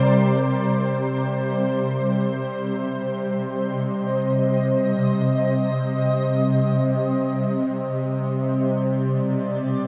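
Spacious and melancholic, this free-time ambient passage in C minor, cut from a longer piece and tuned to A4 = 443 Hz, rests on a shimmering, ethereal pad sustaining slow-blooming chords up front, its detuned, granular tone lifted by an octave-up shimmer and chorus. Beneath it, a tense, string-like bowed drone holds a low C with vibrato and a noise layer. Everything sits in a huge, wet reverb with a long decay, as the harmony moves from C minor to G5 over C at 7.5 seconds.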